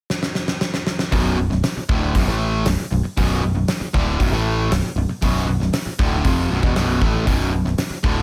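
The gated 80s drum kit starts this menacing, aggressive hard rock excerpt at 0.1 seconds with a drum fill. Its fat snare and punchy kick sit up front in a polished, airy stone-room sound, with hi-hat alongside. At 1.1 seconds a riff in B minor lands at 117 BPM in a straight 4/4, carried by two overdriven, picked electric guitars. The semi-hollow guitar stands forward with its hollow-body character, while the cranked stack guitar adds a bright layer further back. Underneath, the picked electric bass growls with a warm, direct tone. Light reverb and small room ambience frame the parts through to the cut at 8.2 seconds.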